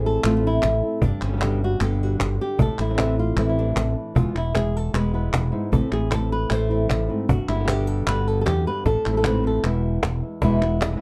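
Driven by a straight, fiery 4/4 pulse at 153 BPM, this intense flamenco passage opens with a bright, fingerpicked flamenco guitar carrying the melody up front, its finger squeaks audible, while a second, dark thumb-plucked guitar adds stabs and a punchy fretless electric bass anchors the low end. A woody cajon with faint snares and crisp, close palmas hand claps both join at 0.2 s. The chords circle through Am, G and E, tuned slightly below standard pitch, in a warm studio room with moderate ambience, cut from a longer piece.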